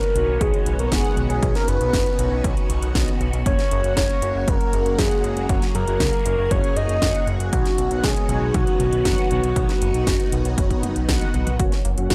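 An octave-layered synth lead, round and softened with chorus, 12-bit sampler grit and tape echo, carries a romantic melody over a swirling, phased string machine and an overdriven house kit of cracking snare, metallic hats and toms, opening this danceable italo disco excerpt at 118 BPM in straight 4/4. Mellow, brassy synth stabs with a dark edge and a fat, tube-saturated sawtooth bass join at 0.2 seconds, a punchy overdriven kick follows, and the chords move between Badd9 and F#, with a drum fill leading to a bright analog pluck arpeggio at 11.6 seconds and a very quiet riser at the close. The sound is dry and gritty, with the drums re-recorded in a large room.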